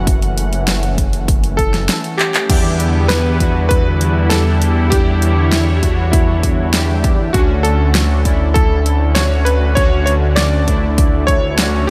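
An electric grand piano with a clangy, vintage tone carries the melody from the first moment, bathed in tape echo and shimmer reverb, over a lush, airy unison pad that sits in the background with chorus, phaser and sidechain pumping. Beneath them a glossy, nasal synth bass with a plucky filter and fast attack sits up front, pumping in time with the sidechain. This is a cinematic, nocturnal synthwave cut, taken from a longer piece, moving at 99 BPM in a straight 4/4 in E dorian. An electronic kick and a pop kit with a fat snare, bright hi-hats, handclaps and crash cymbal arrive almost at once, and a drum fill at 2.2 seconds leads into a new section where bold, brassy analog synth stabs enter at 2.5 seconds with chorus, vibrato and shimmer reverb. The harmony moves from F#m7 to Em7 and then to Dmaj7 at 7.3 seconds, all within a light overall reverb.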